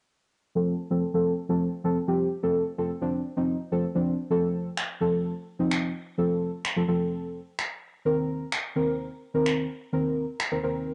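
Dance-pop at 128 BPM in a straight 4/4, upbeat and carefree, cut from a longer piece in F mixolydian. A deep, mellow chord stab with a soft, dark sub-octave body, plucky fast attack and chorus carries the accompaniment up front, moving from F to Cm7/Eb, with a filter sweep shaping it over the opening stretch from 0.6 to 4.3 seconds. Layered electronic finger snaps join at 4.8 seconds, and the whole home cassette recording sits in a moderate spring reverb with a muffled, tape-dulled top end.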